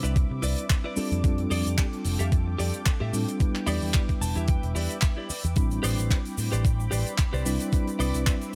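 Nu-disco at 111 BPM in A minor with a sensual, cosmic mood, this short cut from a longer piece rides an overdriven, thumpy electronic kick and a tight, dry funk kit with handclaps, hi-hat, shaker and woodblock, a very quiet cabasa, and an up-front picked bass with envelope filter and tube saturation, while a reedy electric piano with fast tremolo and delay, a thick detuned sawtooth pad with sidechain pumping, and a bright, clean direct guitar riff with lush chorus, which takes a fill from 3.9 to 5.6 seconds, move through Cmaj9, F69, Em7 and Am11 under studio reverb.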